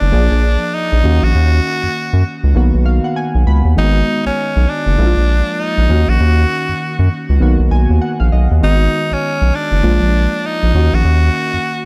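A raspy, gritty tenor saxophone carries a punchy, forceful melody with light vibrato and a touch of digital delay over chorused analog keys, which add detuned fills at 2.6 and 7.4 seconds, and a deep, up-front analog bass in this slick, confident new jack swing excerpt at 99 BPM, swinging through A#7, D#m7, Bmaj7 and G#m7 in a dark, dry production.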